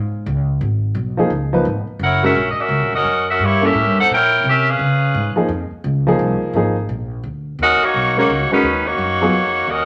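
Joyful and brassy, this short cut from a longer big band swing piece moves at a brisk 172 BPM in Db major with a lilting swung feel. An upright bass anchors the whole stretch from the start, its woody, growly pizzicato sitting up front in the low register. A grand piano joins at 1.2 seconds with smooth, vintage comping of short sustain, moving through harmonies such as Gb7, Gdim7 and Fm7. The saxophone section carries the melody in two phrases, first at 2.0 seconds and again at 7.6 seconds, its tight, clear voicing shaded by light vibrato and a period jazz character. A large studio reverb gives the parts a wet, roomy glow.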